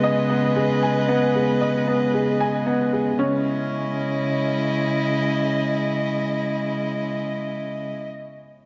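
A worn, slightly detuned upright piano with a woody, vintage tone and long sustain plays a riff through tape echo, running until 8.7 seconds in this hypnotic, cinematic piano-and-strings electronica fragment at 114 BPM in 4/4 and C# minor. Alongside it, a close, up-front string quartet, one bowed player per line with vibrato, holds dark sustained chords that move from G#m/C# to C#madd9 at 3.2 seconds before stopping at 8.1 seconds. A lush hall reverb wraps the dark, warm-toned production.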